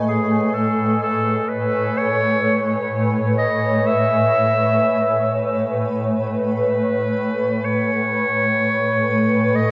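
A worn, warbling cassette-tape sound colors this short fragment, its pitch drifting while a huge ambient reverb with an 8.6-second tail surrounds it. This weightless, peaceful ambient piece moves at 63 BPM in a straight 4/4, in A lydian, resting on a single Amaj9 chord. A cloudy, evolving granular pad sits up front from 0.0 seconds, holding blurred sustained chords with slow attacks, long releases and its own built-in reverb. From 0.1 seconds a bright, vintage-toned clarinet plays a solo melody in a classical style, also up front, trailed by a diffuse ambient delay. Both parts continue to 9.7 seconds, where the fragment ends.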